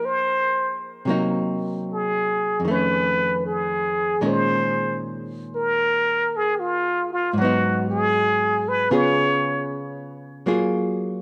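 A dim, smoky recording with a moderate plate reverb and nothing above 10.6 kHz frames this wistful jazz ballad at 77 BPM in a swung 4/4, cut from a longer piece. Up front, a plunger-muted trumpet carries the melody with a bright wah-wah tone, light vibrato, soft attacks and scooped notes, while a clean, picked electric archtop guitar with a dark hollow-body sound accompanies through chords such as Fm11 and Gbmaj9. The key moves from F minor to Bb minor at 4.2 seconds, and the guitar plays alone after the trumpet stops at 9.7 seconds.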